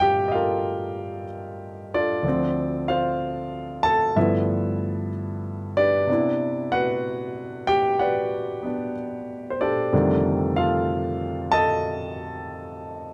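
A grand piano sits up front and alone for the whole 13.1 seconds, its intimate, natural tone carrying audible action noise in a late-night, moody solo jazz passage cut from a longer piece. At a slow 62 BPM in 4/4 with a swung eighth-note feel, it moves through Gm11, Dm7, G13 and Cmaj9 before settling on F13, spanning D2 to A5. Light reverb surrounds the instrument, and the tuning sits at A4 = 441 Hz.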